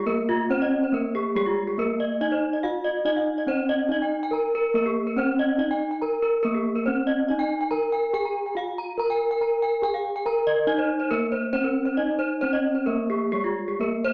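Heard through a small speaker, this short cut from a longer gamelan piece has the feel of a group playing live in one stone room, its reverb lending a hard, echoing ring. Two bronze metallophones sit up front for the full 14.1 seconds at a steady 142 BPM in 4/4, tuned to a Bb slendro scale. One, struck with a wooden mallet, carries the lower melody, while the other, played with a horn mallet, spins bright, airy arpeggios above it, both in paired tuning whose beating gives the music a brilliant, shimmering glow.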